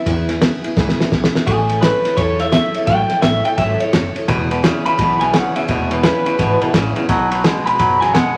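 Upbeat and retro, this short rockabilly cut swings along on a bright, full-bodied picked steel-string acoustic guitar, a woody pizzicato upright bass and a muffled, cloth-damped drum kit of kick, fat snare and dark ride, with a drum fill at 0.8 seconds. A slightly broken-up lead guitar through a small old amp carries the melody up front from 1.5 seconds, and a scooped, compressed electric guitar adds a twangy riff from 4.3 seconds. Vinyl crackle and a moderate large-studio reverb surround the mix.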